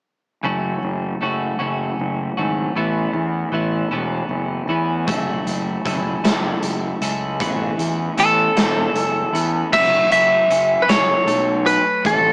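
Brooding and dark, this short cut of quiet-loud alternative rock in a straight 6/8 opens on a clean, twangy twelve-string electric guitar picking arpeggios over a growly, overdriven fuzz fingered bass, cycling between F#m7 and Aadd9. A big acoustic rock kit with a punchy kick, medium-tuned snare and bright crashes and hi-hat joins at 5.1 seconds, and a slightly broken-up lead guitar takes the melody up front from 8.2 seconds. It all sits in a rough rehearsal-room recording with a small-speaker sound and light reverb.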